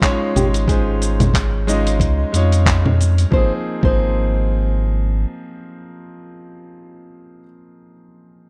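Sunny and smooth, this short cut from a longer sunset chillout piece moves at 91 BPM in Ab major with a swung sixteenth-note feel, shifting from Dbmaj9 to Ab69 at 3.3 seconds. A dark, classical nylon-string guitar carries the melody, fingerpicked with audible finger squeak, over a clear, vintage concert grand piano, both touched by digital delay, while a deep, round sine sub bass enters at 0.4 seconds. A dusty, gritty sampler-style kit of congas, handclaps, hi-hat and shaker sits up front until 3.3 seconds beside a thumpy, compressed electronic kick, inside a warm production with light reverb and digital ambience.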